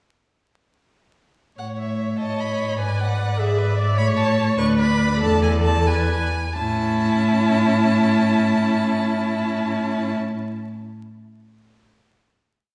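An up-front, focused cello anchors this short, graceful and spirited classical-period piece for string quartet in 6/8, holding a sustained bass beneath two violins. The first violin sings the melody with close, expressive vibrato, soft attacks and portamento, the second adds a smooth-topped tremolo line and sustained chords, and the viola joins at 2.2 seconds with a counter-melody and held chords. The tempo slows from 3.4 seconds into a final chord at 6.6 seconds, all heard from further back in a reverberant recital hall with a layer of vinyl crackle.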